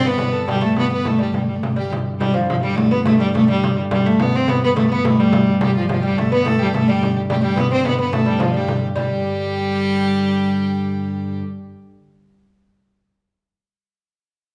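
An up-front viola da gamba carries the melody of this festive, ancient-sounding medieval dance in a straight 6/8, its bowed, fretted gut-string tone reedy and biting with a light vibrato. A delicate fingerpicked lute with double strings and an earthy, boxy fiddle supply second lines, the fiddle dropping out at 1.9 seconds and returning at 5.6. Meanwhile a full chamber organ principal chorus drones in the background with audible chiff, and a small, bright frame drum played with soft hands sounds until 9.1 seconds, as the dance speeds up in a wet recital hall reverb in this portion of a longer piece.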